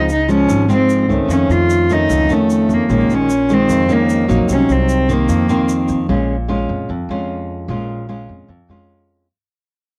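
A rich, reedy bowed cello carries the melody up front over fingerpicked nylon-string guitar with a cassette-tape tint, woody pizzicato upright bass and a grainy, bright tube shaker in this smooth, melancholic bossa nova excerpt in Bb minor at 150 BPM, where the cello and shaker drop out near 6 seconds and guitar and bass continue through a fade-out to 9.3 seconds in light reverb with a home-cassette sound.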